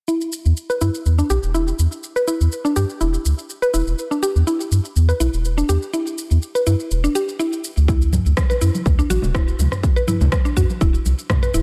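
A straight 4/4 groove at 123 BPM drives this afro house passage in E minor, with a produced afro-pop kit of rim clicks, shaker and toms set in a studio reverb from the start. A woody, mallet-like FM pluck carries arpeggios between D4 and B4, up front and mellow, coloured by chorus, digital delay and sidechain pumping while a filter sweep moves across it. From 0.5 s a round, dark analog bass, built from square, sine and triangle waves with a wave-folded edge, holds the low end between D1 and G2, pumping against the sidechain under its own filter sweep. At 7.9 s the E minor chord gives way as a punchy, layered electronic kick arrives up front and damped congas with thin skins and soft hands add a bright, vintage touch. The mood is spiritual and earthy, with a light reverb over the mix, and the passage is cut from a longer piece.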